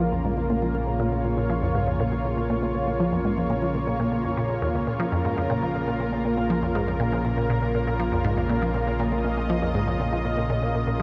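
Hypnotic and expansive, this excerpt of sequencer-driven ambient space music sets a lush, warbling unison pad holding sustained chords with chorus up front, a squelchy, resonant blip pluck riffing through phaser and delay, and a round sine sub bass anchoring the low end, all three playing throughout and bathed in a huge, echoing reverb that evokes a vast space.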